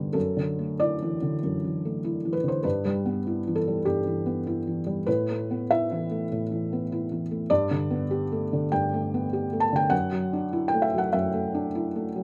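Neoclassical minimalist piano with a hopeful, intimate mood, played rubato in 4/4. A single felt-muted upright piano carries the whole 12.2-second excerpt, sitting up front with a soft, dark tone shaped by thick felt and the audible noise of its action. It spans from F#2 up to A5, moving through Dadd9/F#, Em/G, Asus2 and Gadd9 before settling back on Dadd9/F# at 9.9 seconds. A slapback echo trails the piano, and light reverb adds a little air to a recording made outdoors, free of room sound. The tuning sits slightly sharp, with A4 at 445 Hz, and the passage is cut from a longer piece.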